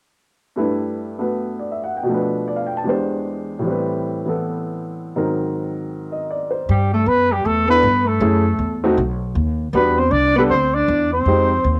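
Small-group swing and bop jazz with a relaxed, sophisticated air: this excerpt from a longer piece opens with a woody, cassette-tinged upright piano accompanying alone from 0.6 seconds, until at 6.7 seconds a dark, distant trumpet with light vibrato takes the melody in plate reverb, a mellow alto saxophone with subtone and scooped notes adds a second line, and a growly pizzicato upright bass enters up front, set in the modest booth ambience of a home cassette recording.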